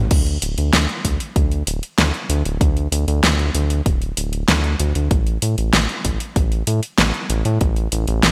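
A round, deep analog bass sits up front from the very start at 0.0 s, blending sawtooth and sine tones with a touch of ring modulation, tube saturation and sidechain pumping; its dark, sustained notes have an evolving character, each one arriving with a fast attack. This is a nostalgic, uplifting synthwave piece in a straight 4/4 at 96 BPM, cut from a longer track. A punchy, tape-warm electronic kick drum joins at 0.1 s and stays until 7.7 s, layered and produced with a small room ambience. Alongside it, a pop drum kit enters at the same moment and carries through to the end, pairing a fat snare with metallic hi-hats and crash cymbal, all dressed in small room ambience and gated reverb. The mix has a bright 1980s-style digital sheen with light reverb, and the bass and drums are all placed up front for a bold sound.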